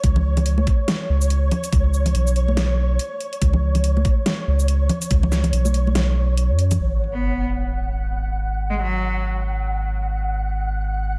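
A swung, half-time groove drives this brooding, meditative deep dubstep excerpt, built on an overdriven, knocking electronic kick up front, a dubstep kit of huge snare, bright hats and shaker re-recorded in a small room, and hard-handed congas carrying dub echo, over a round, soft sub bass and a flickering, grainy, detuned texture with its own reverb. At 6.8 seconds the kit and congas stop as a sub drop sounds in the background. At 7.1 seconds a clear, focused bowed cello with vibrato enters, playing a brief melody through dub echo above the sustained bass and texture in light digital ambience.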